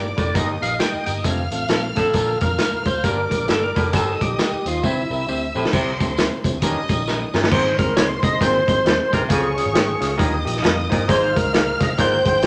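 Uplifting and warm, this uptempo 1960s-style soul excerpt swings at 134 BPM, with a fat, percussive tonewheel organ carrying the melody up front through overdrive and a slow rotary speaker, a mellow baritone saxophone riff, a lush bowed violin section on a second line, a barky overdriven reed electric piano in the background, a round, foam-muted picked electric bass, a gritty, saturated vintage drum kit with two drum fills, the second leading into a move to Ab major at 7.5 s, and a jingly tambourine that drops out at 7.4 s, all in a moderate large studio reverb.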